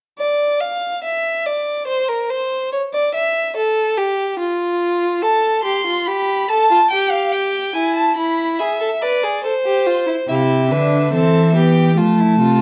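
Moving at 71 BPM in a straight 3/4, this serious, driving excerpt of a baroque-style classical fugue for string quartet opens with a solo violin, smooth and even with vibrato, carrying the second line from 0.2 seconds. A focused, up-front violin melody joins at 5.2 seconds, bringing the harmony through A minor and E7. At 10.3 seconds an expressive viola with portamento and an intimate, close cello bowed sul tasto with an airy, soft attack enter over Cmaj7 and F, all set in a dark, warm production with moderate large studio reverb.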